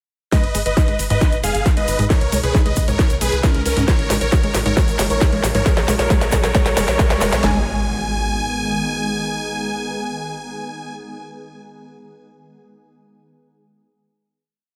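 Lightly reverberant and polished, this short uplifting trance piece at 135 BPM in G# dorian feels emotional and bittersweet, led by huge, detuned supersaw chords that pump against the kick while playing a repeating riff in thirds and sixths, doubled in unison by a very quiet, dark grand piano. Beneath them, a shimmering, ethereal pad holds sustained chords from 1.1 s, a round analog pluck cycles through arpeggios under a filter sweep, a tight sequencer bass rolls in sixteenths, and two layered house drum kits drive the build with a punchy four-on-the-floor kick, cracking snare, claps, programmed hats and a drum fill, joined by a grainy egg shaker. The drums, shaker and pluck drop out by 7.6 s as a faint riser and impact usher in a final G#m chord that rings until 11.0 s.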